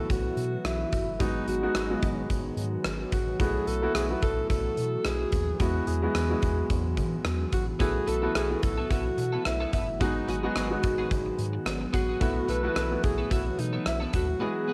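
Uplifting and glossy, this short cut from a longer 1980s-style pop piece rides a lightly swung sixteenth-note feel over chords that circle between B7sus4, G#m7 and Eadd9. A smooth-topped alto saxophone carries the solo melody with pop vibrato, while a brilliant grand piano fills in the accompaniment underneath. A swirling sawtooth pad, detuned and slow to bloom, holds sustained chords through phaser and chorus, and a deep, round analog bass with a fast attack anchors the low end. The gated drum kit sits up front with a tight kick, hi-hat and rim click in an airy stone-room sound. At 7.8 seconds a clean, picked twelve-string electric guitar joins with a compressed, chorused riff, and the cassette-tape home recording gives the saxophone, piano, pad, drums and guitar a light haze under gentle reverb.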